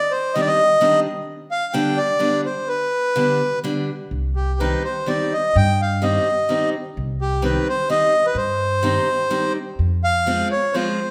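Set in a recital-hall reverb, this short cut from a bittersweet, whirling musette waltz in C harmonic minor moves at 128 BPM in a rubato 3/4, with a reedy, single-reed accordion carrying the melody close-miked, dry and up front. Beneath it, a picked steel-string parlour guitar adds boxy, bright accompaniment with audible finger squeak, and a woody pizzicato upright bass on steel strings joins up front at 4.1 seconds. The harmony moves from Cmadd9 through G and Cm before shifting to Fm for a brief closing section at 9.8 seconds.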